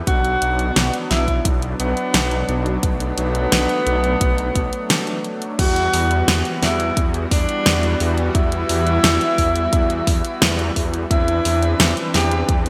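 A bright, 1980s-style digital production bathed in a lush hall reverb opens this moody, nocturnal synthwave clip at 87 BPM in E minor, cut from a longer piece. A soft, airy supersaw holds sustained chords over a thick, saturated detuned saw bass, both pumping with sidechain, while a distant, roomy alto saxophone carries the solo melody with vibrato and digital delay. A punchy electronic kick and an up-front pop kit with a fat, gated-reverb snare, hi-hat and crash drive the groove as the harmony moves from Bm to Emadd9 at 5.6 seconds and settles on Cmaj7/E at 11.1 seconds.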